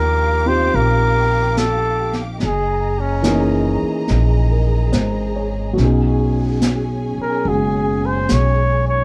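A romantic, late-night jazz ballad at 71 BPM with a lilting swing, this short section cut from a longer piece sets an up-front flugelhorn melody with scooped notes over an intimate grand piano with audible action noise and long sustain, lush bowed strings with vibrato, a woody, thumpy pizzicato upright bass, and a distant, roomy brush kit of snare and hi-hat that enters at 0.7 seconds, all moving through Ebmaj9, Gb13 and B69 in a dry mix.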